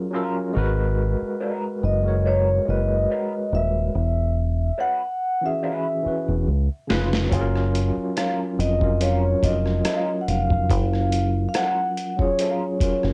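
A round, punchy fingered bass sits up front in this relaxed neo-soul R&B excerpt at 71 BPM in F# major, moving through lush chords like F#maj7, G#m9, E69 and C#7 under a barky, overdriven tine electric piano with fast tremolo and a dark, slightly broken-up electric guitar through wah. A mellow vibraphone with soft mallets and slow motor vibrato carries the high melody from 1.8 seconds, and a gritty, pitched-down boom bap kit with a thumpy kick and high-tuned snare arrives at 6.9 seconds. The whole piece has the intimate, lo-fi feel of a home cassette recording with very little reverb.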